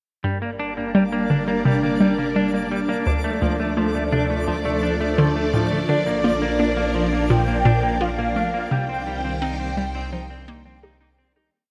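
Hypnotic and expansive, this short, complete piece of ambient, sequencer-driven space music moves at 85 BPM in a straight 4/4, set in G minor and cycling through Gm, Dm, Bb and Cm. A phased string machine holds swirling, vintage sawtooth chords up front, while a clean, picked semi-hollow electric guitar runs a 10-step arpeggiated loop through analog delay that drifts against the bar. Beneath them, a hollow, nasal square-wave pluck with a bouncy filter snap repeats a 12-step riff through chorus and delay, and a round sine sub bass fades in to sustain the roots. A twinkling granular texture enters at 0.7 seconds with a sparkling, octave-up shimmer on a held high note, and at 5.9 seconds a breathy, flute-like synth lead adds a warbling, free melody with vibrato. The whole piece sits in a huge, wet ambient reverb with a long tail, and a fade-out begins at 7.8 seconds.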